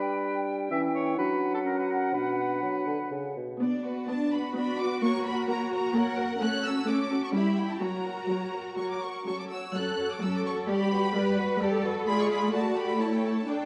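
A brief woodwind opening of clear oboe, pure flute section, mellow clarinet and bassoon gives way at 3.6 seconds to lush bowed strings, with a rich viola section up front and a focused, distant studio violin section, joined from 4.1 seconds by a woody cello section on the bass and a symphonic violin section carrying a smooth vibrato melody high above, all in a stormy, urgent classical passage in B minor at 128 BPM in a rubato 3/4, bathed in wet scoring-stage reverb.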